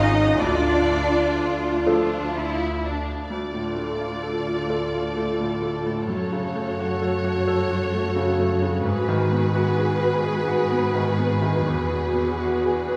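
The recording is heard from further back on a scoring stage, with a wet reverb hanging around the orchestra. This sorrowful, bittersweet cinematic cue is written in 6/8 with uneven, rubato beats, and it is a fragment cut from a longer piece. Two bowed violin sections carry the melody and a second line with lush vibrato, the first with a soft, expressive attack and the second smooth and even, while a viola section sits in the background filling out the accompaniment. A brilliant baby grand piano stands up front, and a rich, close cello section supplies the bass, joined by a distant double bass section until 3.1 s. The harmony moves from Dm through F#m and G#m7 to Eadd9 as the passage shifts from its brief opening section into a longer second one at 3.3 s.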